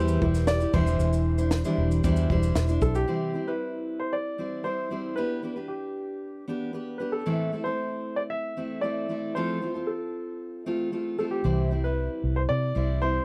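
A round, punchy vintage electric bass with a dark, foam-muted tone sits close and prominent in this sunny, heartfelt acoustic pop excerpt in C major at 115 BPM in a straight 4/4, tuned to A4 = 435 Hz. It plays through the opening, then drops out at 3.0 seconds and returns at 11.4 seconds. A compact cocktail drum kit with a punchy kick, high-tuned snare, shaker, crash and dark cymbals plays only at the start, stopping at 3.1 seconds. Throughout, a full-bodied jumbo steel-string acoustic guitar is fingerpicked as accompaniment, while a woody, polished upright piano carries the melody in a present, warm voice. The harmony opens on Em and Cadd9/E before moving through C, G/B, Am and F back to C. The sound is dry and close, in the manner of a 1970s studio with little reverb.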